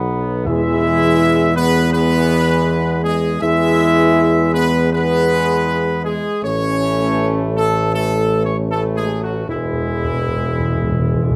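Triumphant and solemn, this classical brass passage, cut from a longer piece, moves with an uneven pulse as an up-front bright trumpet section carries the melody over sustained chords from a present, clear trombone section and a distant, dark French horn section with light vibrato, all in moderate studio reverb. A roomy tuba with a warm tone and light vibrato anchors the bass while the harmony shifts from E to A at 6.4 seconds and back to E at 9.5 seconds. Close, dry timpani struck with medium mallets sound briefly near the start and return for a fill from 9.5 seconds to the end.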